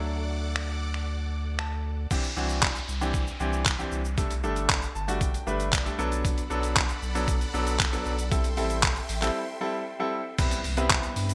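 A gritty, pitched-down boom bap drum kit of thumpy kick, hi-hat, handclaps, finger snaps, shaker and crash sits up front with gated reverb from 0.6 seconds, driving this summery, euphoric dance-pop passage cut from a longer piece. A brilliant, polished concert grand piano plays accompaniment and fills over a round sine sub bass, both pumping with sidechain, while huge detuned supersaw chords with phaser come and go over D, Bm7 and Am7. A background electronic downlifter and an impact at 10.4 seconds, following a brief break, mark the transitions in the bright 1980s-style digital mix with light reverb.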